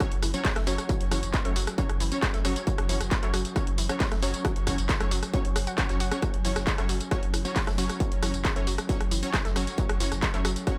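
Lightly reverberant, this short cut from a longer piece of driving peak-time techno moves at 135 BPM in a straight 4/4, hypnotic and insistent over a single F#5 chord. A distorted electronic kick sits up front, re-recorded in a large room, joined by a layered techno kit of handclaps, warm hats, rim click and tambourine whose hats and percussion pump against the sidechain. Far behind them, a very quiet acoustic brush kit adds hi-hat and a medium-tuned snare from a small, distant room with a rolled-off top. A round sine sub bass holds F#1 under overdrive and a low-pass filter, pumping with the kick. An aggressive, thick rave stab of detuned unison sawtooths fires bright, decaying stabs through chorus, reverb and delay, while a nasal, wave-folded analog pluck plays a background riff soaked in tube saturation and dub echo, and an eerie, metallic FM drone swells in slowly and hangs underneath throughout.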